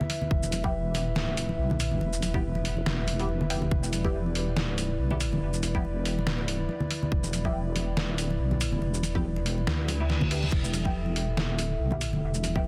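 A deep, soft wobble bass sits up front with a dark, detuned sawtooth-and-sine tone, holding down E minor beneath a tight, tape-warm electronic kick in this cavernous, meditative deep dubstep excerpt at 141 BPM, felt in half-time with a swung 16th-note groove. A gritty, pitched-down trip hop sampler kit of snare, hi-hat, shaker and crash rides alongside soft-handed congas in the background, while a moody analog pad with chorus sustains chords and a muted, nasal dub chord stab flickers through phaser and dub echo. A brief electronic reverse cymbal arrives at 9.8 seconds, and the dense, heavily limited master carries a layer of vinyl crackle with little reverb.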